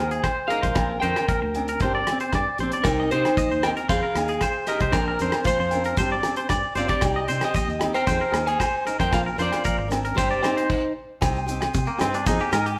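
Danceable highlife guitar band in C minor at 115 BPM, where a slightly broken-up electric guitar carries the melody up front over a twangy clean electric guitar's tremolo-laced arpeggios, a picked steel-string acoustic guitar, a round, foam-muted fingered bass, a dry, damped 70s drum kit with dark cymbals and a tight kick, ringing vintage agogo bells and grainy maracas from 2.8 seconds, all in a live-room reverb, until a brief stop at 10.7 seconds gives way to a clean electric guitar solo at 11.2 seconds over mellow combo organ chords.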